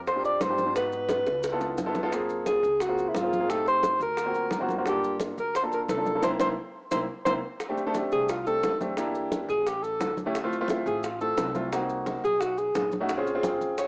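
A woody, thumpy upright bass opens this sunny, danceable Afro-Cuban jazz clip at a brisk 175 BPM in straight 4/4, quickly joined by tight high-tuned bongos, damped congas and grainy maracas tucked in the background, with a warm grand piano comping up front through rich, altered jazz harmony. A breathy, subtoned alto saxophone with light vibrato and a tape-worn tint carries the melody, the band hits an accent at 6.2 seconds, and from 7.6 seconds the horn takes a solo over the shifting chords. Moderate spring reverb and a small-room ambience give the whole piece a homespun, cassette-recorded character heard through a small speaker.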